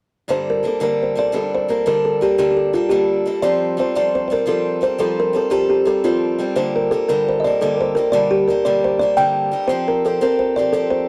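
In a straight 9/8, this dark, lively and wild Celtic folk fragment sets a woody, ringing kalimba melody up front over a boxy, picked acoustic archtop guitar with audible finger squeak; both play from 0.3 to 11.1 seconds as Gmadd9 and Fadd9 chords alternate, captured dry and close in a small room with a 1970s studio character.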